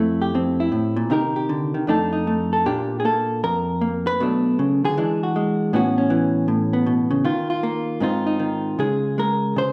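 Swung eighth notes at 156 BPM in 4/4 are stretched with rubato in this relaxed, sophisticated solo jazz passage, cut from a longer piece and played on a vintage hollow-body electric guitar. The guitar sounds dark, clean and compressed, its picked tone sitting up front while a large studio reverb places it further back in the room, spanning F2 to C5. The harmony moves from Fmaj9 and Cm7 into a longer second section from 2.7 seconds, passing through Bbmaj7, Bm9, E9 and A69 before settling on Ebsus2, Ab6 and Db6 by 8.8 seconds.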